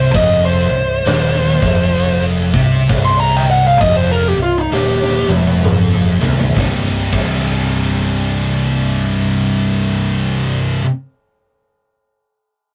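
Heavy and hypnotic, this stoner and doom metal fragment crawls at 65 BPM in 4/4 with a swung feel, rooted on a single C minor chord. Up front, a dark, compressed fuzz lead guitar carries the melody from the start, reaching as high as C6 before it stops at 5.3 seconds. Beneath it, two thick fuzz guitars sit in the background on a low riff, joined by a bright, double-tracked, scooped high-gain guitar, all three running to about 10.9 seconds. A fingered electric bass adds a round, amped low end with tube saturation, while a big acoustic drum kit with a punchy kick, fat snare and bright cymbals plays a fill from 4.7 to 6.6 seconds and drops out at 7.3 seconds. The rough rehearsal-room recording has a moderate booth ambience and tube saturation across the mix, lending the whole a gritty, close feel.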